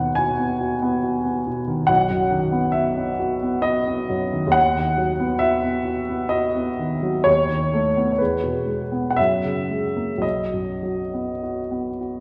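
A woody upright piano with long sustain carries this tender, dreamy romantic nocturne on its own, sitting up front while a wet concert hall reverb places the listener further back in the room. The short passage, cut from a longer piece, moves in a gently rubato 3/4 at roughly 50-73 BPM in B major, with the instrument tuned to A4 = 441 Hz. The piano spans from a low B1 to G#5, and its notes ring on into the hall's 2.1-second decay. The harmony opens on B over D#, leans into a B7 over D# near 7.3 seconds, then passes through E and a colourful F#9 before settling home on B at 10.2 seconds. The result is an intimate, warmly glowing moment that feels suspended in a spacious, reverberant room.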